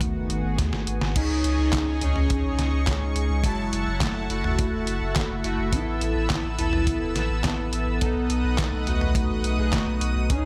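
A cinematic, nostalgic synthwave piece, cut from a longer work, moves at a straight 4/4 pulse. A velvety synth lead carries the melody throughout, its smooth sawtooth-and-triangle tone colored by chorus, phaser and vibrato, while a lush, thick unison pad holds sustained chords beneath it with a warbling, vintage character, chorus and sidechain pumping. A round, deep analog bass sits up front with its own pumping, joined by a punchy acoustic kick drum and a detuned 8-bit digital drum machine whose handclaps, hi-hat, snare, toms and crash cymbal have a sampler-style character. A drum fill at 0.6 seconds leads into the next section at 1.2 seconds, where bold, fat analog synth brass stabs enter with a filter sweep and chorus. The harmony moves from G#m7 through C#sus2, F#m7 and Asus2 before landing on B, all in a dry sound with little reverb.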